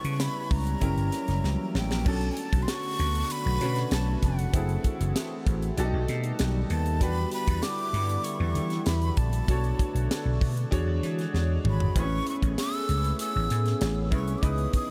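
Polished 1980s jazz-funk pop with a bittersweet, slick mood, cut from a longer piece, where a breathy jazz flute carries the melody through a diffuse ambient delay, its tone shaded by vibrato, chiff and a slightly unsteady edge. Underneath, a bright baby grand piano with lush chorus and a smooth, detuned sawtooth analog pad with slow-attack sustained chords glide through lush extended harmonies such as Bm9, B7b13 and Amaj9. A growly, punchy slap bass and a dry, tight funk drum kit with a high-tuned snare sit up front, with drum fills at 1.4 and 11.3 seconds, all framed by light studio reverb.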